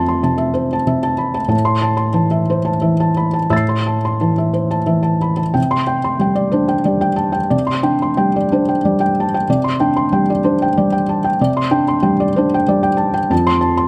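A felt-muted upright piano, soft and mellow with audible action noise and sitting up front in close, detailed sound with light reverb, plays solo through this tender, intimate neoclassical minimalist excerpt in C major, moving in a rubato 3/4 around 93 BPM across a range of F2 to C7 over chords of Fmaj7, Am, Csus2 and finally F at 13.3 seconds.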